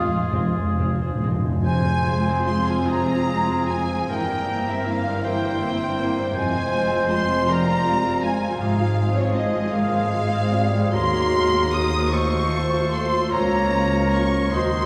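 Solemn and yearning, this slow romantic orchestral movement in 6/8 with free rubato opens on a round, up-front timpani fill and a brief, very quiet tuba note, both finished by 2.8 s. A lush violin section carries the expressive melody with vibrato, shadowed by a second violin section sliding with portamento, an airy flute ensemble, a clear clarinet, a warm oboe and a present bassoon, while violas, cellos and double basses enter at 0.3 s as a smooth, even foundation. Mellow French horns hold sustained chords and a ringing concert harp plays arpeggios, all bathed in a long church reverb.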